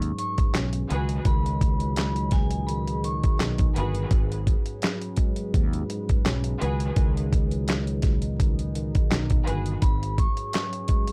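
Gritty and moody, this 11-second boom-bap hip-hop excerpt at 84 BPM sways on a swung 16th-note feel, led by an up-front, compressed sampler-style drum kit with a thumpy kick, medium-tuned snare, handclaps and hi-hat, under a direct fretless electric bass, a mellow tine electric piano tucked in the background, a deep detuned analog pad with chorus and phaser, lush bowed string stabs entering at 0.9 seconds, and a metallic, ringing vibraphone with delay that plays at the start and returns at 9.8 seconds, all moving between G#m7 and C#13sus4 in a dry, dusty hardware sound laced with vinyl crackle.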